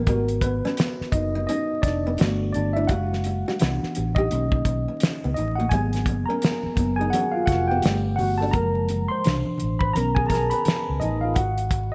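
Late-night and introspective, this neo-soul R&B fragment swings gently as a worn, slightly out-of-tune tine electric piano solos up front through lush chorus over ninth chords, backed by a dark, round, foam-muted fingered bass, a cloth-damped drum kit with a fat snare and tight kick, a fingerpicked nylon-string guitar in the background until 8.5 seconds, and soft-handed congas that enter very quietly at 5.7 seconds, set in bright 1980s-style digital production with vinyl crackle.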